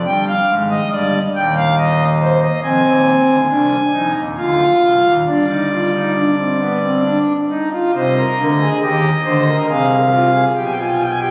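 Captured on a phone in the room, the sound carries a long, wet church reverb and studio ambience. A pipe organ plays alone on thick, warm foundation stops with a romantic voicing, placed up front and spanning C1 to Ab5. This serious, contemplative passage, cut from a longer baroque-style three-part fugue in C minor, moves at 69 BPM in 3/4, opening on a high G5 and shifting into a new section at 7.9 seconds that closes on a G7/B chord.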